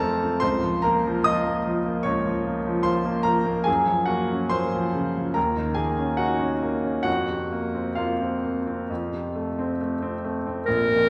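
The recording places the listener further back in a recital hall, where a reverb lasting about 1.8 seconds lends the sound a wet, spacious bloom. This elegiac, melancholic romantic classical duo for clarinet and grand piano, cut from a longer piece, moves at a rubato 65-76 BPM in 4/4 and sits in Bb minor. The bright, polished grand piano carries the accompaniment alone from the start, sitting up front with an intimate presence and audible action noise as it spans from Bb1 to Eb6. Its harmonies pass through Bbm/Db, Gbmaj7 and Ebm7 before settling on Fsus4 and then F. At 10.7 seconds the warm clarinet enters up front in a classical style, sounding a single Bb4 just as the piece breaks off at 11.1 seconds.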